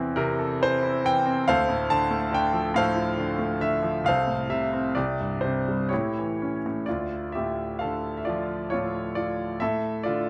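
In a rubato 3/4 at 62-71 BPM, this dark, reflective classical fragment of lyrical solo piano features a bright concert grand with audible action noise, deep bass and long sustain, heard up front in a moderate recital hall reverb, moving through chords such as Am/E, Dm7 and A7 before settling into D harmonic minor at 6.9 s and closing on Asus4 at 9.6 s.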